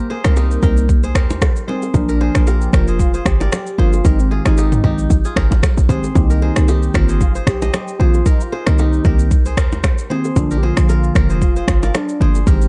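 Afrobeats at 114 BPM with a gentle 16th-note swing, this smooth, mellow excerpt moves through Abmaj7, Bb and Cm7 harmony under a dark, warm digital ambience. Up front, a deep house drum kit with a deep kick, finger snaps, rim click, shaker and toms drives alongside a punchy, tight 808-style bass. A bell-like tine electric piano with phaser and a fingerpicked, ringing kora fill the middle, while small-room bongos and congas sit in the background beneath a velvety sawtooth-and-triangle synth lead carrying the melody with vibrato, chorus and digital delay.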